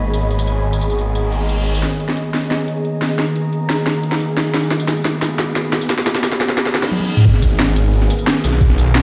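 At 177 BPM in a straight 4/4, this dark technical drum and bass clip in G# minor feels mechanical and aggressive, with a metallic, inharmonic FM drone warbling eerily under chorus and pumping throughout while an ethereal, airy pad floats above until 6.9 s, a growling sawtooth bass snarls with overdrive at the start and returns for the drop at 7.3 s, an overdriven kit with a cracking snare, bright hats, tambourine, toms and crash builds through drum fills as a very quiet reverse cymbal and riser rise beneath, and a knocking electronic kick lands hard on the drop, all set in a stone room's light reverb.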